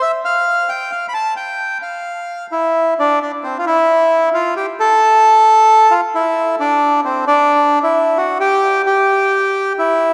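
Dramatic and melancholic, this tango fragment, cut from a longer piece, moves with a free, rubato feel as a lone bandoneon carries the whole passage from 0.0 to 10.1 seconds. Its reedy, dark tone sits up front with a mid-forward presence, ranging from C4 to B5. A lush church reverb with a long four-second tail surrounds the instrument, placing it in a large, resonant hall.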